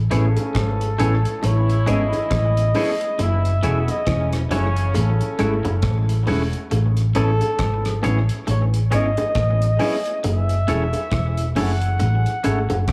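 A dark, round, foam-muted bass opens this bittersweet, longing lovers rock reggae excerpt at a swung 68 BPM in F# dorian, joined almost at once by a breathy, whispered flugelhorn melody with scooped notes and tape echo, a clear, tight horn section playing a second line until 5.7 s, a barky tine electric piano through phaser and tape echo, two clean, twangy electric guitars (one playing a riff with tape echo, the other playing stabs in spring reverb), a cloth-damped, thuddy drum kit of hi-hat, kick and rim click, and high-tuned bongos from 0.4 s, set in a light small-room ambience as Amaj7 and F#m7 alternate.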